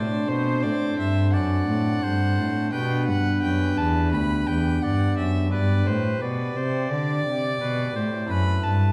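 Serene and dance-like, this short passage cut from a longer piece is a baroque-style sonata movement with continuo in G major, moving at 86 BPM in 4/4 with a flexible, rubato feel. A single bowed violin carries the melody with a gut-string, period-style tone, light vibrato and a reedy edge, while a bright, close-miked solo oboe supplies a second line in a narrow range. A pipe organ fills in the accompaniment on light, sparkling flute stops in a baroque voicing, and a bowed cello, played by one player, sits up front on the bass with a nasal, gut-string character. The harmony opens on D7, settles onto G at 2.7 seconds, and turns to F#m7b5 at 8.3 seconds just before the passage breaks off. A wet recital-hall reverb with a 1.5-second decay surrounds the ensemble, and the overall production leans dark and warm.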